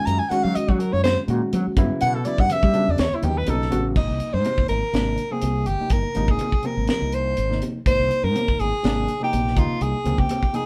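Funky and slick, this electric jazz fusion piece at 123 BPM swings its 16ths as a breathy, whispered soprano saxophone sits up front, soloing for the first 4.0 seconds before the harmony settles into Ab lydian, over a gritty, overdriven reed electric piano through a combo amp, a round, punchy fretless bass, a tight, dark funk drum kit with a high-tuned snare, and very quiet, ringing congas, the band captured live in one room with moderate reverb.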